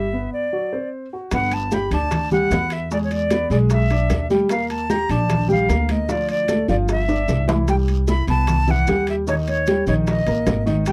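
A straight 4/4 Afro-Cuban jazz groove at 151 BPM drives this lively, danceable excerpt, opening with a break in which an airy, vibrato-laden silver flute sings over intimate grand piano with audible action noise and a woody, thumpy pizzicato upright bass, before congas, round low-tuned bongos, ringing metal-shell timbales, raspy guiro and grainy maracas join at 1.3 s, with a drum fill at 7.1 s as the harmony moves from Gmaj9 through Ebmaj9 to Eb7 in a dark production with light reverb.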